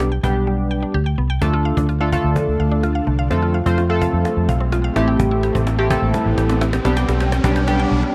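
Driving, energetic dance-pop at 127 BPM in D dorian, this short excerpt pairs a glossy, detuned chorused polysynth and a round, foam-muted vintage electric bass up front with a woody cajon, a bright FM mallet-like pluck spinning arpeggios through chorus, phaser and slapback echo, a very quiet ethereal pad entering at 1.9 seconds, and a background riser from 4.6 seconds, all building after a silent gap through a drum fill over Dm, F and Am7 in a dry, close 1970s-style studio sound.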